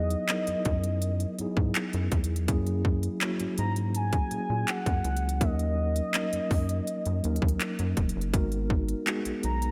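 A straight 4/4 pulse at 82 BPM from an overdriven trap kit with a hard-clipped kick, crisp hats and handclaps anchors this longing, sensual contemporary R&B excerpt, where a rubbery, nasal square bass, a mellow tine electric piano and a smooth, gliding portamento lead with chorus, tape echo and vibrato move through Emaj9, F#9, D#m7 and G#m9 inside a dreamy mix soaked in lush hall reverb.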